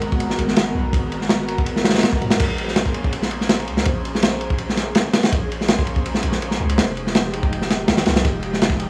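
A crunchy breakbeat kit drives this drum and bass and jungle cut at 164 BPM in a straight 4/4, its tight kick, medium-tuned snare, crash and ride sitting up front with a saturated, gritty edge and dark, rolled-off cymbals. The mood is nostalgic yet frenetic, and the short excerpt from a longer piece stays in drop mode the whole way through. Under the drums, a long 808-style bass holds deep, mellow sine tones with a fast attack that decays, moving between F1 and Ab2. An airy, breathy pad carries sustained chords with a slow attack and long release, its detuned sawtooth and triangle layers touched with noise, chorus, phaser and vintage 12-bit sampler grit for a bright, hazy shimmer. The harmony moves from Abm9 to Bbm9 at 2.4 seconds and to Fm9 at 6.8 seconds, all wrapped in a light, small-room studio reverb.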